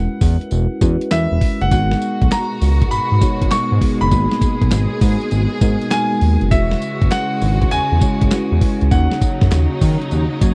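A clear grand piano melody, a bell-like electric piano with phaser and a smooth, saturated synth bass open this bouncy, punchy new jack swing excerpt, joined at 0.2 seconds by a gritty, compressed sampler-style drum kit with thumpy kick and tambourine, then by very quiet crisp handclaps and lush, distant bowed strings, all in a dry, close 1970s-style studio sound.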